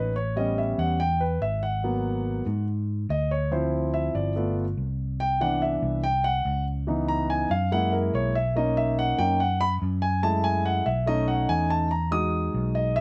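Sophisticated and lively, this 13-second fragment of Afro-Cuban jazz moves at 143 BPM in a straight 4/4 in B major, with a concert grand piano soloing throughout over lush extended chords that land on Bmaj9 and then Emaj9. The piano sounds intimate and natural, with audible action noise, deep bass, long sustain and a slapback echo. A fingered electric bass sits up front with a dark, round, amped tone, and the whole take carries the dry, roomless feel of an open-air performance.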